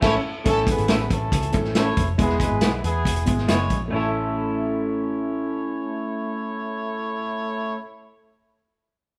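A horn section sits up front with light vibrato and a distant, roomy pop-style ensemble tone, carrying a second line in this uptempo 1960s-style soul excerpt at 138 BPM in A major with a straight, danceable 4/4 feel. The full band hits an accent at the start before the harmony moves from A to E at 2.2 seconds and back to A. A vintage acoustic drum kit sounds muffled and lo-fi, with a tight kick, medium-tuned snare, hi-hat and crash cymbal, and it drops out at 3.8 seconds. Underneath, a dark, round, foam-muted picked electric bass holds the low end. An electric guitar through a small old amp plays slightly broken-up, compressed stabs bathed in spring reverb. A concert grand piano adds intimate, boxy accompaniment in the background with audible action noise and long sustain, the whole band captured live together in a moderate stone room.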